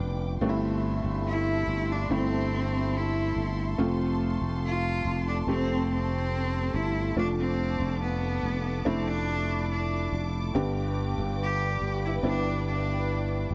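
Set in a straight 4/4 at 71 BPM, this heartfelt, emotional pop ballad in F lydian is a passage cut from a longer piece, moving through C6/G, F, Dm/F and G. A growly, punchy fretless electric bass sits direct and close on the low end, while a slightly detuned upright piano with a brilliant, woody, worn tone plays open accompaniment. Above them a lush studio string section holds smooth, even, bowed chords with a smooth top. From 1.3 seconds a bright solo cello, bowed by one player with biting, intense vibrato, carries the melody up front yet with a distant quality. A small room ambience and dark, warm production give the recording an intimate feel.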